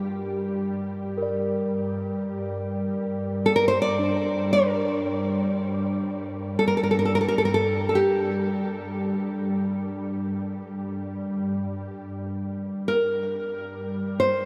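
A vast, wet ambient space with a 9.2-second reverb tail frames this haunting, meditative world excerpt in free time and G minor, where an up-front, full-bodied nylon-string guitar fingerpicks a classical melody between G4 and D5 through shimmer reverb and delay, an ethereal, detuned pad drones low from G2 to G3 with slow attack and chorus, and a ringing bronze singing bowl with slow beating adds metallic, band-limited texture until 11.3 seconds.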